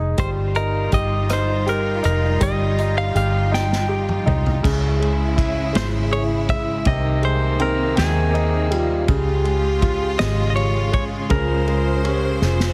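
A slow, swaying six-eight pop ballad at 54 BPM in dotted quarters, this tender passage cut from a longer piece sets a round, foam-muted fingered electric bass up front under a clear concert grand piano with deep bass and short sustain, while an acoustic drum kit with dark cymbals and a punchy kick sits distant and roomy, rolling into fills at 3.5 and 12.4 seconds. A twangy, direct-recorded clean electric guitar carries the melody with delay, over a lush, bowed string section whose bright vibrato holds sustained chords. From 4.6 seconds a smooth, dark French horn section adds a classical-style second line in the background as the harmony moves from Ebadd9 through Dbm and Abmaj7/C, all inside light studio reverb and a heavily compressed radio sound.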